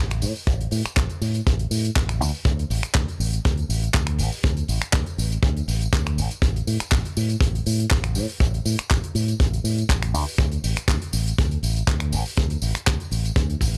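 A dry, gritty recording with transformer saturation carries this sunny, feel-good nu-disco excerpt at 121 BPM with a light sixteenth-note swing, where a bright, up-front fingered electric bass with an envelope filter and its own transformer saturation runs from the start, a tight, mid-forward funk kit of finger snaps, handclaps, hi-hat and tambourine joins at 0.1 seconds, and a tight, up-front kick drum lands from 0.5 seconds.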